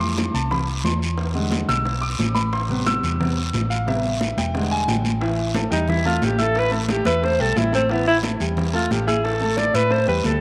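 A smooth, vintage grand piano opens this fiery, sophisticated slice of Afro-Cuban jazz, taking a solo over a dark, round hollow-body electric bass played with the fingers and ringing, high-tuned congas set in the background. Almost at once a raspy, close and dry guiro and round, low-tuned bongos join, the bongos sounding distant, as if in a large room. The harmony moves from Fmaj7 through E7#9 and Am7, with a wet spring reverb lending the whole space a lingering shimmer. At 5.2 seconds the solo passes to the alto saxophone, which enters up front at 5.7 seconds with a mellow, breathy subtone, vintage jazz character and scooped notes. This is a short portion cut from a longer piece, ending on an A7 chord with its third omitted as the saxophone keeps soloing.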